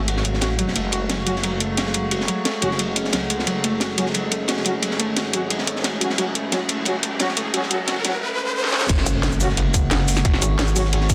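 A dense, heavily limited mix with a moderate room reverb carries this aggressive, tense excerpt of dark technical drum and bass at 177 BPM in F# minor, where an eerie, inharmonic drone and warm brass stabs rise through filter sweeps over a gentle, round pluck arpeggio, a growling detuned saw bass, a gritty, saturated breakbeat kit and a cracking electronic kit with metallic hats, until a background riser and impact mark the drop at 8.9 seconds, when a tight, up-front kick arrives and a chorused, wobbling FM bass follows at 9.1 seconds.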